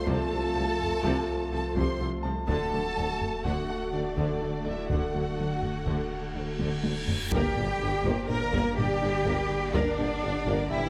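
Relentless and vast, this cinematic hybrid orchestral and electronic film score moves at 124 BPM in a straight 5/4, with a lush violin section carrying the expressive, vibrato-rich melody over a second violin line, a portamento-tinged viola accompaniment, a focused, close cello section and a very quiet double bass section, all set in a moderate concert hall reverb and tuned to A4 = 444 Hz. Beneath them, a distant French horn section and an ethereal pad with chorus, built-in reverb and tremolo hold sustained chords, while a punchy sub bass with a pitch-drop attack, a soft tuba, a faint vintage-toned grand piano, a dark, gentle pluck arpeggio and a background taiko ensemble struck with heavy sticks fill out the texture. The harmony moves from F/C to D at 2.5 seconds, and an electronic reverse cymbal and drum fill build toward an impact at 7.3 seconds as the chord turns to Gm and the passage opens into its next section.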